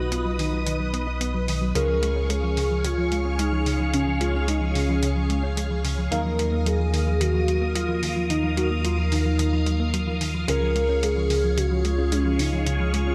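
This synthwave excerpt opens with everything arriving at once: a velvety sawtooth lead carrying the melody over a deep, rumbling detuned saw bass that sits up front with tube saturation, while an electronic hi-hat enters at 0.1 seconds. The mood is cinematic and nostalgic, moving at 110 BPM in a straight 4/4 through B, Db and Ebmadd9 chords. A full string machine ensemble holds lush sustained chords above, coloured by phaser and ensemble chorus with a soft attack and long release. A round, tine-like FM pluck plays arpeggios with chorus and digital delay, and a filter sweep runs across it for the whole passage. In the background, a worn, slightly out-of-tune tine electric piano adds stabs through lush chorus, a low-pass filter and its own filter sweep. The bright 1980s-style digital production sits in a moderate hall reverb with a 2.5-second tail, and the hi-hat carries a tape-warm, small-room sampler character.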